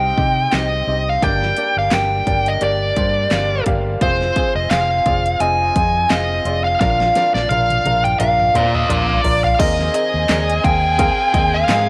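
Piano-driven pop with a hopeful, uplifting mood, this short passage, cut from a longer piece, moves with a gentle sixteenth-note swing over a minor-key progression that settles on a brighter added-ninth chord near its close. A dark, smooth lead guitar carries the melody up front, its picked lines thickened by overdrive and a slapback echo. Beneath it, a clear, woody upright piano with a slightly detuned character plays the accompaniment, while a round, amped fingered electric bass anchors the low end. A punchy, overdriven pop drum kit with a fat snare, metallic hats, handclaps and toms enters at 0.2 seconds and plays a fill from 6.8 to 9.6 seconds. At that point a lush, distant violin section joins with a soft attack, vibrato and portamento, adding an expressive second line as the whole mix sits in a moderate echo-chamber reverb.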